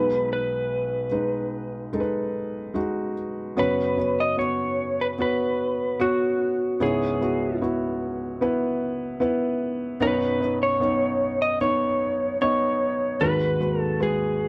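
Heartbroken and deeply emotional, this short pop excerpt moves at an unhurried pace in a straight 4/4. A lightly driven electric lead guitar carries the melody from start to finish, its dark, slightly broken-up, picked tone compressed and placed up front with a slapback echo trailing each note. Beneath it, a felt-muted upright piano plays accompaniment throughout, its soft, mellow, intimate sound boxy and up front, with thin felt and audible action noise adding a close, human texture. The harmony drifts from G#m/B through F#sus4 at 3.6 seconds, then C#m7, Badd9 and finally G#m7, shifting the brief opening passage into a longer second section. The dry, close 1970s-style studio sound, touched only by light reverb, keeps both parts near the listener and heightens the sense of private grief.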